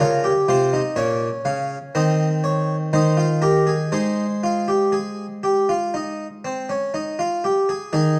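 A solo harpsichord opens at once on a B-flat minor chord, beginning a serious, solemn baroque-style fugue in three parts, cut from a longer work. The instrument is a French-style harpsichord with octave strings. Its plucked tone is brilliant and mid-forward, placed up front in the sound, and its compass here runs from Bb2 up to F5. The harmony moves through C minor over E-flat at 2.0 seconds, then E-flat, arriving on A-flat at 3.9 seconds. A moderate recital-hall reverb surrounds the playing, and the dark production gives the straight four-beat pulse a grave character until the harpsichord stops at 8.2 seconds.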